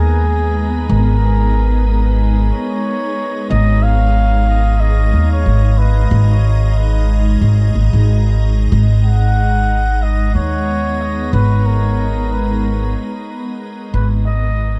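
A lazily swung sixteenth-note feel in 4/4 carries this deep, spacious ambient dub excerpt, anchored by a woody, thumpy pizzicato upright bass sitting up front and well above the other parts in level. A soft, organ-like pad of detuned sine tones holds a sustained G#madd9 chord with slow attack, ensemble chorus and its own reverb, while a distant, veiled bucket-muted trumpet sings a soft-attacked solo melody through dub echo. The dark studio reverb keeps the top end rolled off, and the piece fades out from 12.2 to 14.8 seconds.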